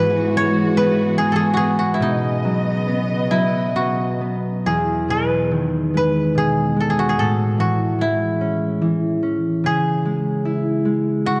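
Celtic folk slow air in E major, wistful and tender, moving at a rubato 65-76 BPM in 3/4 in this short cut from a longer piece. Up front, a mellow, woody koto played with fingerpicks carries the melody, while a bright, ringing concert harp supplies fingerpicked accompaniment throughout, and a distant, dark chamber string section adds expressive, vibrato-laden bowed chords until 4.6 s. A wet concert-hall reverb surrounds the dark production as the harmony moves from Eadd9/G# and Badd9 through Emaj7 and Amaj7 to C#m.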